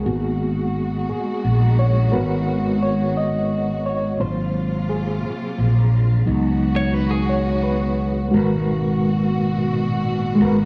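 A light studio reverb gives this short cut from a longer piece a close, intimate sound, with the reedy electric piano and growly fretless bass sitting up front. It is a slow, sultry R&B number in a straight six-eight, carrying a yearning mood over rich chords that move from G#m9 through G#13 and C#9sus4 before returning to G#m9. The mellow electric piano takes the lead with a fast tremolo shimmering through its built-in speakers, while a dark, lush string section holds bowed, woody chords with gentle vibrato beneath it. The bright, amped fretless bass anchors the low end throughout. A clean, compressed electric guitar adds a brief picked second line from 6.8 s, just before the music moves into a new section at 8.3 s.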